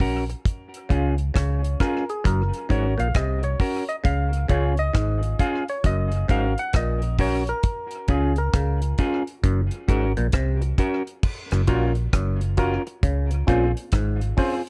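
A round, punchy, foam-muted fingered bass sits up front in this sunny, uplifting roots reggae excerpt at 67 BPM with a swung feel, beside a dry, tight acoustic drum kit of kick, rim click, hi-hat and crash, while a clean hollow-body electric guitar with tape echo, a stringy clav riff through a phaser entering at 0.9 s, and a hollow, fast-attack, decaying organ stab with chorus that solos until 11.2 s move from Db and Gb to Gbmaj7 and Dbmaj7 in a dark production with light reverb.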